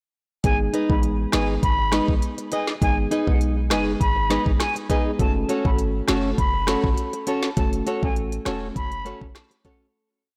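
A bouncy, tough dancehall piece opens at 0.4 s with an up-front electronic drum kit, whose knocking kick is answered by a woody snare layered with rim click over smooth hats. Entering together with it are a deep, boomy 808-style bass with slides in the background, soft round pluck chords with chorus and a filter sweep, and a distant, airy concert flute carrying a syncopated, vibrato-laden hook through tape echo. A fingerpicked flamenco guitar adds off-beat chops from 0.7 s, also with tape echo, while the blown-out, overdriven recording sits in light reverb before fading out from 7.6 s.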